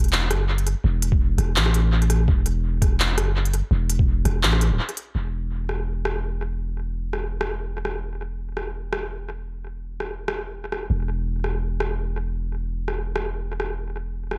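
A deep, sine-toned 808-style bass and an up-front, overdriven electronic drum kit with crisp hats, handclaps and rim clicks open this heavy, tense half-time drum and bass excerpt at 167 BPM with a light swing, while a gritty, pitched-down, sampler-style kick thumps in from 1.1 to 4.1 seconds, and analog delay on the kit feeds an echo-heavy, dry mix carrying a faint mains hum.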